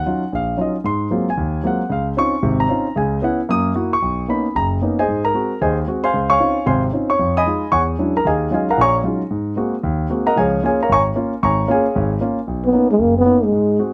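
Swinging jazz with a playful, warm mood, where an up-front concert grand piano with deep bass and short sustain comps through rich extended chords in a small room before a dark, breathy, close-miked trombone enters at 12.7 s for a brief solo phrase with light vibrato.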